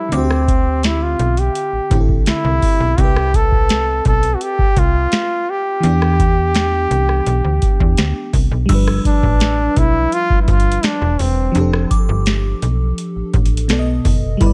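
A bright, punchy trombone carries the melody with light vibrato and a touch of delay, sitting up front until it drops out at 11.9 seconds, in this moody, longing slice of contemporary R&B at 84 BPM. Beneath it, a lush FM electric piano with a soft pad layer and chorus supplies dreamy chords, a snappy slap-like FM bass holds the low end up front, and a booming analog drum machine drives a straight 4/4 groove with a deep kick, crisp snare, metallic hats and vintage 12-bit sampler grit. A crystalline synth bell glints faintly in the background at the start and returns at 8.7 seconds as the harmony moves to G7, and the mix carries little reverb.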